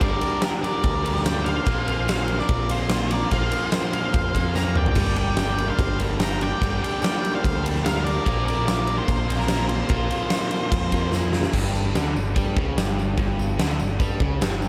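A straight 4/4 classic rock groove at 146 BPM in G minor drives this swaggering, gritty cut from a longer piece, with an up-front arena drum kit (fat snare, punchy kick, bright cymbals) and a growling, overdriven bass anchoring twin octave-fuzz lead guitars whose dark, distorted melody and second line carry slapback echo until 11.1 seconds. Crunchy and overdriven electric guitars hold riffs in the background, a very quiet picked steel-string acoustic adds finger squeak until 11.6 seconds, and a jingly tambourine enters at 0.4 seconds, all within a lush hall reverb that gives a big arena sound. The chords move between Gm and Bbsus2, with a drum fill at 4.6 seconds and another marking the turn at 11.5 seconds to a G5 section carried by the riffing guitars, bass, drums and tambourine.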